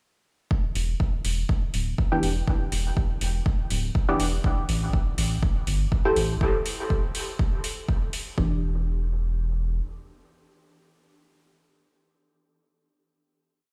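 A four-on-the-floor kick opens this hypnotic, deep dub techno piece at 0.5 s, punchy and up front at 122 BPM, with a slight swing on the 16ths and overdriven, metallic open hi-hats riding above it. A round analog bass sits just as far forward, playing off the beat in a low register and pumping with a sidechain. From 2.1 s, muted, detuned chord stabs drift in sparsely, their filter-plucked tone softened by chorus and phaser, pumping as well and trailing dub echoes. In E minor, the stabs move one shape in parallel from Em7 to A7 and back, and at 8.4 s the groove gives way to a final Em7 chord. The whole piece sounds as if it were played over a big sound system in a bare stone room, lending a hard, reflective space to an otherwise dry mix.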